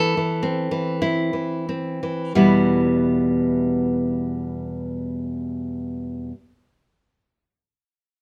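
Intimate and passionate, this brief cut from a longer romantic piece for solo classical guitar moves at a slow 41-60 BPM in 2/4 and E minor, with a free rubato feel. The fingerpicked nylon-string guitar sits up front with a warm tone, fresh strings and audible finger squeak, ranging from E2 to A4 and playing from 0.0 to 6.3 seconds. It eases and slows over an Am/E chord at the start, then settles onto Em at 2.4 seconds, all framed by light reverb.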